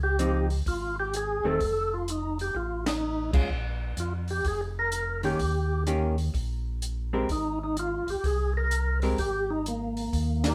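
Greasy and soulful, this swung soul jazz organ trio excerpt opens with a fat, lightly overdriven tonewheel organ carrying the melody through a slow rotary speaker and chorus vibrato, its percussive second-harmonic attack and key click sitting up front over a round, mellow tonewheel bass line on a second organ. A dark, clean hollow-body electric guitar comps from 0.2 s to 9.2 s, while a compact cocktail kit with a punchy kick, high-tuned snare and dusky cymbals adds a fill around 2.6 s. The band hits accents together at 2.8 and 10.4 s, captured live in one room with moderate studio reverb over a progression that moves from Dbmaj9 through F7 and Eb7 to Abmaj9.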